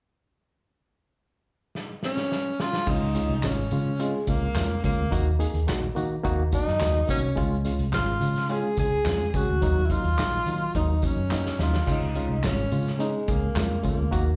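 This cut from a longer live club performance opens with a vintage drum kit rolling a fill at 1.8 s, its punchy kick, medium-tuned snare, hi-hat and dark crash cymbals sounding rolled-off and pumping in the room, before a breathy tenor saxophone slides in at 2.1 s with mellow, scooped notes and jazz-style vibrato. At 2.9 s the groove settles into an uptempo 1960s-style soul feel at 107 BPM in a straight 4/4, with a round, foam-muted fingered electric bass sitting dark and up front under the band. A barky, reedy electric piano joins at the same moment, lightly overdriven with a fast tremolo and a slapback echo through its built-in speakers, while close tambourine and group handclaps add a lift in the background. The harmony rocks between Db and Ebm in Db major as the saxophone carries the soft-attacked solo melody with its own slapback echo, and the drums drop in another short fill just before the return to Db. 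Heard through the venue's PA with a light club reverb, the whole cut feels warm and danceable.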